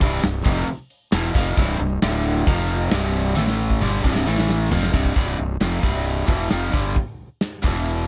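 A straight 4/4 pulse at 134 BPM drives this swaggering classic rock fragment in C major, where a bright, double-tracked overdriven guitar riff sits up front over a fuzzy fingered electric bass and a punchy, gated 80s drum kit in a dry mix. The chords move through D5, F5 and C5, then alternate between A5 and C5 under a drum fill from 3.4 to 5.2 seconds, leading into a new section back on C.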